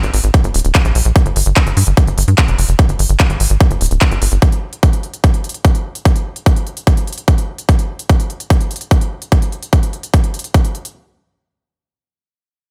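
A straight 4/4 pulse at 147 BPM drives this short, psychedelic trance cut in G phrygian, with an up-front, punchy electronic kick entering at 0.3 s over a big-room dance kit of crisp hi-hats and handclaps, both drum parts tape-warm and re-recorded in a large room. A tight, saturated sequencer bass of sawtooth and square waves, filter-plucked with a fast attack and a moving notch, spans D1 to G2 and runs through a filter sweep before dropping out at 4.4 s, leaving the drums to carry the driving momentum. The mix is dry, with little reverb.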